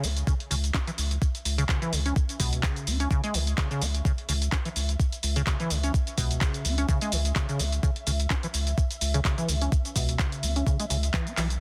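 A squelchy, resonant square-wave acid riff opens this gritty, trippy acid house excerpt at 127 BPM in C# minor, joined at once by a deep, round analog bass and a punchy analog drum machine carrying handclaps, hi-hat and shaker with a 16th-note swing. An overdriven, thumpy electronic kick drum arrives at 0.3 seconds and sits up front, while the hollow acid line moves through filter sweeps and is colored by chorus, delay and sidechain pumping. Beneath it, the dark, sustained low bass also pumps against the beat, holding the groove on a single C# minor chord. An ethereal, detuned pad fades in gently in the background, its mellow, airy sustain wrapped in ensemble chorus and its own reverb. The overall sound is dry, dense and heavily limited, and a drum fill at 11.4 seconds marks the close of the cut.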